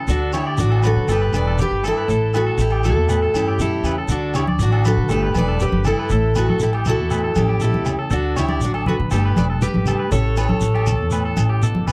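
Highlife guitar band music with a carefree, warm mood, moving at 120 BPM in a straight 4/4 over a repeating D, Gadd9 and A7 progression. A bright, full-bodied steel-string acoustic guitar carries the picked melody up front, its jumbo body and the odd finger squeak audible. Beneath it, a woody, thumpy upright bass on gut strings anchors the low end, while a slightly broken-up, twangy electric guitar spins arpeggios through spring reverb. A small fingerpicked nylon-string guitar adds warm accompaniment in the background, and a vibrato-laden trumpet traces a quiet second line behind the guitars. Grainy shekere and distant, ringing agogo bells drive the groove from the start, with thick-skinned congas struck by hard hands joining at 4.3 seconds, all captured in a dry, close 1970s-style studio sound, the fragment being cut from a longer piece.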